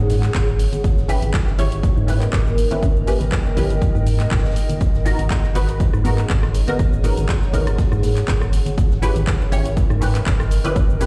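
In a lightly swung 4/4, this moody, deep house excerpt rides a punchy, up-front electronic kick and a tape-warm house kit of handclaps, hi-hat, rim click and shaker, with very quiet low-tuned congas and a faint acoustic big-band kit's hi-hat and snare beneath. A hollow, organ-like FM bass and a blurred, evolving granular cloud pad pump to the sidechain, joined from 1.1 s by a muted, detuned sawtooth dub chord stab carrying phaser, ensemble chorus and tape echo, all colored by cassette tape and a big sound system in a bare room.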